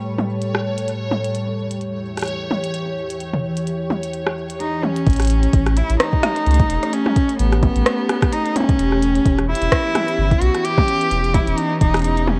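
A swung 4/4 groove of clicky hi-hats, rim clicks and toms from a glitchy drum kit ticks through this eerie IDM fragment, joined at 5.1 seconds by a deep electronic kick and a round sine sub bass. A glassy FM pad holds mellow, chorused chords throughout, while a reversed, granular swelling texture shines over the opening until 5.1 seconds, and a bowed cello enters at 4.6 seconds with smooth vibrato, roughened by 12-bit sampler grit and digital delay. Light reverb and warbling cassette-tape pitch drift give the mix a worn, eerie quality.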